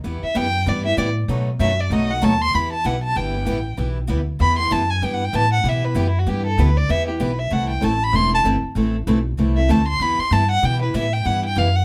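Two picked steel-string acoustic guitars and a pizzicato upright bass open this fragment of swinging, virtuosic gypsy-jazz string music, with a bowed violin joining at 0.2 seconds. The bass sits up front with a woody, thumpy gut-string sound. One guitar has a boxy parlour character, and the other, a bright concert instrument on fresh strings, rests in the background. Both guitars supply accompaniment. The violin carries the melody as an expressive solo throughout, rich with vibrato and portamento and a smooth top end, placed prominently over the band. The harmony moves through minor chords with a dominant seventh, and the group, playing live together in one room, sounds natural in a moderate studio reverb.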